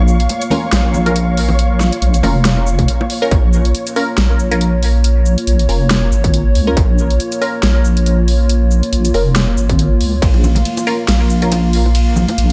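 Deep dubstep in Bb minor at 139 BPM with a swung, half-time feel, brooding and heavy, cut from a longer piece that sits on a Bbm chord throughout. A wobbling, detuned bass with chorus sits up front beneath a moody, sub-octave analog pad with ring modulation and slow attack, while muted, evolving sawtooth chord stabs pass through phaser, analog chorus and dub echo. A grainy, flickering texture glimmers in the background until 3.3 s, ringing bongos and congas with dub echo drift behind, and the drum kit's huge snare and bright hats are punctuated by a distorted, tape-warm electronic kick that first lands at 2.8 s, just before a brief break.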